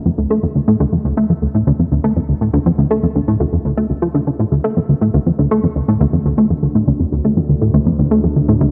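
Cosmic and mysterious, this short excerpt of ambient, sequencer-driven space music at 121 BPM in D minor sets a punchy, funky plucky analog bass riff up front, its sawtooth, ring-modulated and wave-folded tone roughened by 12-bit sampler grit, chorus and analog delay under a filter sweep, over a very quiet, warbling pulse-width-modulated analog drone held on D2, all bathed in a moderate plate reverb.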